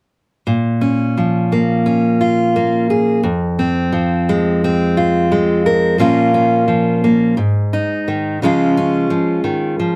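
A bright, up-front fingerpicked steel-string auditorium acoustic guitar carries this wistful, stirring folk excerpt in Bb minor at 87 BPM, moving through Bbm, Fm, back to Bbm, then Ab5 and Db from 0.5 to 10.0 seconds under light reverb.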